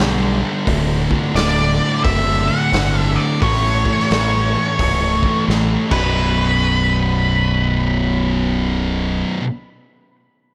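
Stoner and doom metal in B minor at 87 BPM with a swung 4/4 feel, sludgy and hypnotic: a double-tracked overdriven electric guitar and two thick fuzz guitars grind a background riff over a growling, punchy picked bass up front and a gritty, saturated garage drum kit in a small room that plays a fill at 5.5 seconds and stops at 6.0 seconds, while a dark octave-fuzz lead guitar with wah, distortion and delay carries the melody from 1.4 seconds over chords moving from G through D and A to B5.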